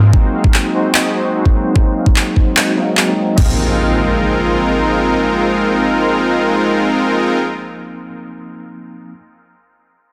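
A smooth, detuned unison supersaw with a soft attack carries the riff up front, pumping against the sidechain and trailing dub echo while a low-pass filter sweeps across it over the Ab7 chord in this playful, euphoric future bass cut from a longer piece at 148 BPM in a half-time feel in Ab major. Beneath it, a clean tine electric piano heard as if through built-in speakers pumps and echoes in the same way, while a knocking, tape-warm electronic kick and a trap kit with crash and handclaps punch up front in a small room until 3.5 s. The harmony then settles onto Ab69, with a downlifter and impact sweeping through as the supersaw sustains until 7.4 s, all in moderate reverb and a dense, heavily limited modern master.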